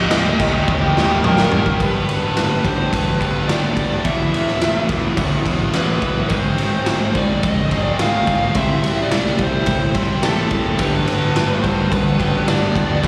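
Quiet-loud alternative rock with a restless, anthemic mood, this excerpt from a longer piece, heard live through a venue's PA with recital hall reverb, sets a dark, smooth overdriven lead guitar melody over a bright overdriven riff guitar (both with slapback echo), a growly fuzz fingered bass and an up-front, gritty garage drum kit whose punchy kick and fill from 0.7 s drive things forward, while a very quiet, sludgy distorted guitar drops out at 1.8 s and returns at 10.8 s, and a clean, compressed twelve-string electric guitar adds faint arpeggios from 1.8 s.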